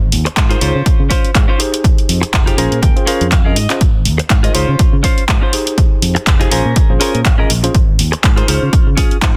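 A dense, heavily limited modern mix with little reverb frames this filtered disco house passage, cut from a longer piece and set at 122 BPM in 4/4 with 56% swing on the sixteenths and a funky, joyful mood. A punchy, up-front electronic kick anchors the groove beside a tape-warm analog drum machine playing handclaps and hi-hats, with the hats pumping against the sidechain. A fingered electric bass, direct and amped, sits between F1 and Db3 under a low-pass filter and sidechain pumping. A bright, picked clean electric guitar recorded direct carries the riff with subtle chorus, filtering and pumping, adding a fill from 2.3 to 3.8 seconds while the drums fill from 3.3 seconds. A worn, slightly out-of-tune tine electric piano supplies mellow chords through a phaser, cycling Ab6, Dbmaj7, Fm7 and Bbm7.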